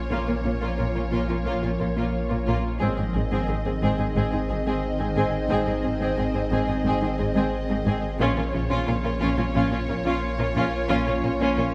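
Relentless and futuristic, this short cut from a longer hybrid orchestral and electronic film score moves in a straight 4/4 through Bb minor, Ab and back to Bb minor at 8.2 seconds. A dark, woody symphonic violin section carries the vibrato-laden melody between Db5 and Eb5, while a smooth, even studio violin section traces a second line beneath it. In the background, a chamber viola section adds expressive portamento accompaniment, a tight French horn section holds classical-style sustained chords, and a granular cloud pad with its own built-in reverb spreads blurred, evolving, mellow harmony. The low end stacks a thick, saturated sub bass with a lush, soft-attacked symphonic cello section and a distant, very quiet double bass section. A very quiet, round pluck with chorus weaves gentle arpeggios through the texture, and a moderate scoring stage reverb lends the ensemble space.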